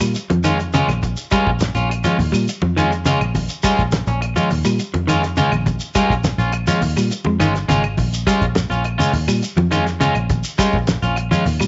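Softened at the top and touched by light studio reverb, this driving, defiant afrobeat excerpt holds a single Bbm7 chord as an up-front, twangy, slightly broken-up electric guitar plays stabs over dark, picked clean-guitar arpeggios and a round, foam-muted fingered bass, while a dry damped 70s kit with a fat snare and tight kick and very quiet low-tuned congas join at 0.2 s, a grainy shekere rides along, and woody claves sit in the background.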